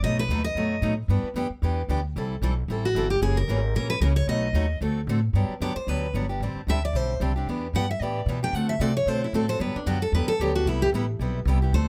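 Two up-front steel-string acoustic guitars and a woody, thumpy pizzicato upright bass open this swinging, charming excerpt of fast jazz manouche, with the full-bodied lead guitar carrying the melody before taking a solo from 5.3 s, while the second guitar comps with fresh strings and audible finger squeak over the bass's dark gut-string pulse, all captured close and dry with detail.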